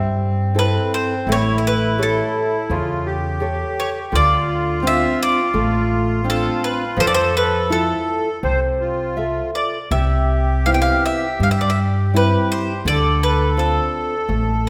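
A fado-style ballad excerpt in a free, rubato 4/4, full of longing and passion, led by an up-front bowl-back mandolin singing a picked, double-string melody over a reedy, sweet accordion second line with light tremolo tuning, bright fingerpicked classical nylon-string guitar accompaniment and a woody, dark pizzicato upright bass, all four playing throughout and set in the generous wash of a scoring stage reverb as the chords move from C6 through A7, Dm7 and Fmaj7 to Cmaj7 before settling back on Dm7.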